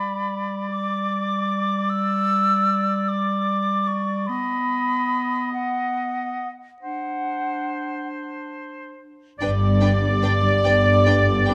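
An airy, mellow silver flute sits up front at the start of this bittersweet, sorrowful cinematic excerpt, its tongued lines carrying vibrato and softened highs until it drops out at 8.1 seconds. Around it, a solo clarinet with a soft attack and smooth top shares the foreground, while a clear, roomy oboe with light vibrato sounds more distant, the three woodwinds each carrying a second line in a slow, rubato 6/8 at roughly 46-51 BPM counted in dotted quarters. At 9.4 seconds the strings and brass arrive: a rich, focused cello section and a dark, woody double bass section anchor the low end, a lush viola section holds a smooth, even accompaniment in the background, and bowed violins add a distant, expressive melody with a very quiet inner line beneath it. A tight, mellow French horn section sustains chords through this closing passage, which runs to 11.5 seconds. The harmony moves from G5 through B and D7 before settling on G, and a generous scoring-stage reverb lends the whole ensemble a spacious, wet glow.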